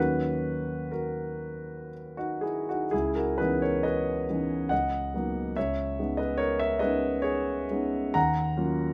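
Hazy and wistful, this brief excerpt of impressionist classical solo piano drifts in 3/4 with a rubato feel, its tempo wandering between 59 and 77 BPM. A grand piano carries everything alone for the full 8.9 seconds, ranging from C#2 up to A#5. Its tone is intimate and natural, sitting up front with long sustain and audible action noise that brings the listener close to the instrument. The harmony moves through extended chords, opening on D#m7, passing through C#m9, Bmaj7/C# and C#sus2, and settling on D#m9 at 8.2 seconds. A light reverb gives the recording a gentle sense of space, and the fragment is cut from a longer piece.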